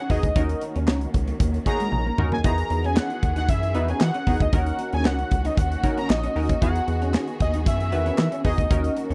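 A dry, close recording in a 1970s studio style frames this slick, funky early-eighties boogie funk cut, taken from a longer piece and moving at 115 BPM in a straight 4/4. Up front, an airy, polished drum kit with a punchy kick, medium-tuned snare, hi-hat, toms and handclaps drives the groove, with a fill from 1.9 to 2.4 seconds. A rubbery, bouncy square-wave bass carries the low end, while a detuned sawtooth polysynth comps with a chorus effect and a filter sweep. In the background, a clean, picked semi-hollow electric guitar plays a riff through an ensemble chorus, and a lush bowed string section holds sustained chords as the harmony moves between Ebm7 and Emaj9. On top, a fat, nasal analog lead with ring modulation, a sub octave, vibrato and slapback echo carries the melody until 8.9 seconds.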